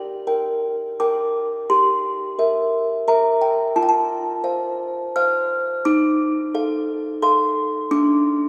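In a 3/4 at 87 BPM, the rubato pulse sways freely, giving this classical lullaby a dreamy, tender mood. A single music box plays alone for the whole 8.5 seconds, spanning D4 to F6 with a delicate, tinkling, plucked tone. It sounds like a large box that is slightly out of tune, with the tuning set at A4 = 439 Hz. Close-miked and up front, the box itself comes across as dry and full, while the church or concert hall setting surrounds it with a wet church reverb lasting 3.1 seconds and a small room ambience. The harmony moves from Gm to C7/G, then F and F7/Eb, before falling away to an unharmonised moment at 7.9 seconds as this short fragment of a longer piece breaks off.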